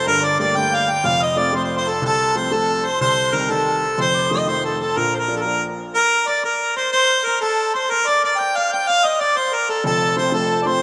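A dark, lively and wild Celtic jig in 6/8 at 123 BPM, this excerpt from a longer piece sets a clear, lightly vibrato harmonica up front with the melody, joined in the background by an airy, chiffy tin whistle and a shimmering, hammered cimbalom on second lines, while a woody, slightly detuned upright piano accompanies through chords from Gmadd9 to F, Cm, F7 and Bb, drops out at 5.9 seconds and returns at 9.8 seconds, all within a lush hall reverb and a rough home-demo mix.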